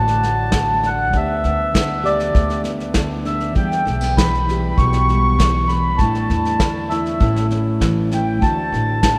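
A straight four-beat pulse from a soft brush kit, with a tight kick and smooth, medium-tuned snare sitting up front, carries this nostalgic, hopeful acoustic folk excerpt. The drums join at 0.1 s beside a woody pizzicato upright bass. Over a full-bodied, fingerpicked dreadnought guitar, a reedy, mellow accordion with slow beating sings the melody through D, G/D, Em, Asus4 and A before returning to D, and the small band sounds as though it is playing in a vast, echoing cathedral with a long, wet reverb tail.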